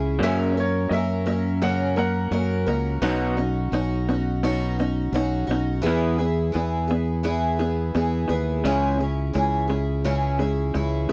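Hopeful and jangly, this short folk rock and heartland rock excerpt moves at a straight 85 BPM in E lydian, its chords passing from F# through Badd9 and E to C#m. A shimmering, octave-doubled twelve-string acoustic guitar carries the accompaniment up front beside a warm, direct fingered electric bass, while an electric guitar through a small old amp plays a dark, slightly broken-up, lo-fi riff. A clear, woody upright piano adds a second line only from 0.2 to 3.3 seconds, all captured in a dry, close 1970s-style studio sound.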